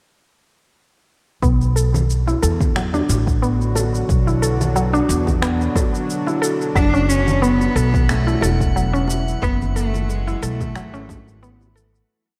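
A woody, thumpy upright bass with long gliding notes sits up front in this earthy, meditative organic downtempo piece, entering at 1.4 seconds together with an overdriven, deep electronic kick, an overdriven shaker-and-snap beat and a round, tape-worn mallet-like synth pluck whose 12-step loop drifts against the bar under a filter sweep. Very quiet, band-limited bongos and congas follow soon after, while a tense, string-like bowed drone pumps beneath. An intimate sul tasto cello with light vibrato carries motif-based call phrases from 6.8 seconds, and a glassy high texture of drifting overtones floats through the dreamy, reverb-soaked mix as it fades out from 8.5 seconds.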